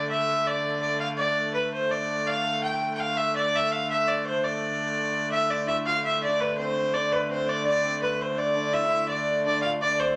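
A 3/4 pulse at 167 BPM with a straight feel drives this medieval dance in D dorian, an ancient, mysterious piece heard as a short cut from a longer work. A single bowed fiddle carries the melody up front from the start, its tone bright and earthy yet slightly distant, moving between B4 and G5. Beneath it, a rich, smooth hurdy-gurdy sustains an even drone from D3 to A3, wheel-bowed and keyed by one player and sitting lower in the mix. At 5.3 seconds a fingerpicked lute joins with a delicate second line between B3 and F4, its nylon double strings, some doubled at the octave, adding an acoustic sparkle. The tune is played through twice, and a wet studio reverb gives the room a short, lingering glow until the close at 10.2 seconds.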